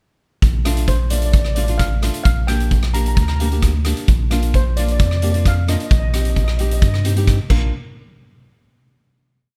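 This short, dry calypso piece sounds close and immediate, with little reverb around the parts, and carries a festive, bouncy mood. A rubbery square-wave bass and a street-band drum kit open together at 0.4 seconds. The bass is hollow and resonant with a dark, plucked filter and plays a two-feel root-and-fifth line, while the up-front kit brings a boomy kick, hi-hat, rim click and crash cymbal in a polished, airy calypso groove. A warm, full-bodied nylon-string guitar adds fingerpicked classical triad chords just after. From 0.9 seconds a shimmering, metallic double-second steel pan, struck with medium rubber sticks in a boxy small-room sound, carries hook-like motif phrases over a single verse whose chords all rest on Bb: Dm/Bb, Gm/Bb, Bb and Cm/Bb. The band stops together at 7.7 seconds, where a final-hit section closes the piece.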